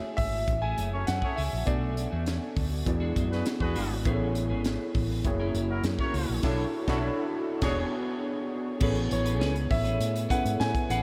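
Opening with clear concert grand piano melody over gritty, overdriven tine electric piano accompaniment and a twangy clean guitar riff in the background, this upbeat, breezy 1980s jazz-funk pop fragment at 101 BPM in A major gains a woody, punchy fretless bass and a crisp fusion kit with high-tuned snare at 0.2 seconds, while a distant horn section with light vibrato adds a second line from 0.9 to 7.8 seconds, a band accent lands at 6.4 seconds, and the grand piano returns at 9.1 seconds, all steeped in a dreamy, huge ambient reverb.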